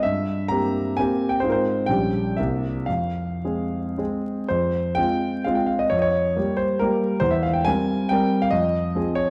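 Dotted rhythms in a rubato 3/4 lilt, ranging between 104 and 146 BPM, drive this graceful, rustic romantic dance in F minor for solo concert grand piano, whose intimate, up-front tone carries deep bass and audible action noise inside a moderate recital hall reverb with vinyl crackle, in a short cut from a longer piece that twice settles from C7 onto Fm.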